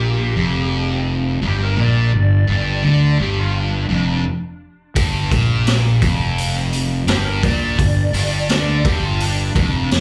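A straight 4/4 pulse at 85 BPM drives this gritty blues rock and southern rock power-trio excerpt, caught at a live club show through the PA with little reverb: a sludgy, double-tracked distorted guitar riff sits up front over a growly, punchy fuzz bass, while a lo-fi lead guitar from a small cranked amp carries the melody further back with slapback and tape echo, and a raw garage drum kit with a boomy kick, medium-tuned snare, hi-hat and rolled-off top joins at 5.0 s.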